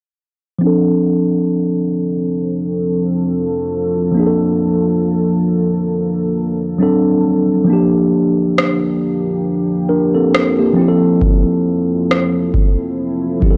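Over a slow, swung 16th-note 4/4 feel, this late-night, moody contemporary R&B fragment opens at 0.6 seconds with a mellow tine electric piano playing up-front chords through a low-pass filter, moving from Dm7 through Bbmaj7, D7 and Gm7 to Fmaj7. A deep, dark ambient pad joins at 1.8 seconds, sitting low in the mix with detuned sawtooth and sub-octave weight, chorus, reverb and sidechain pumping. At 8.6 seconds a booming analog drum machine arrives, its deep kick and rim click carrying 12-bit sampler grit and large-room ambience. The whole recording has a dry, cassette-tape character.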